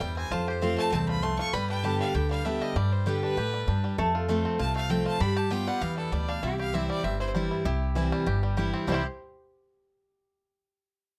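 Bluegrass in C major at a brisk 196 BPM, rustic and virtuosic, this excerpt cut from a longer piece runs about 9 seconds with all five parts playing throughout. A bowed fiddle with light vibrato carries a biting, intense melody high above a mellow, twangy banjo picked with fingerpicks, while a lap resonator guitar adds a metallic, nasal slide line in the background. Up front, a picked dreadnought steel-string guitar plays the accompaniment over a thumpy, woody pizzicato upright bass, moving through F, G, G7 and C, all captured by close, detailed microphones with light reverb.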